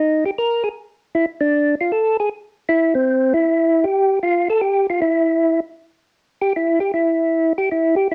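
A swung 4/4 jazz groove carries this bluesy, soulful excerpt, where a lone percussive tonewheel organ sits up front with a mellow, round, dark tone, its third-harmonic percussion and slow rotary speaker colored by moderate studio reverb and the warbling pitch drift of worn cassette tape, moving into a solo passage at 5.8 seconds.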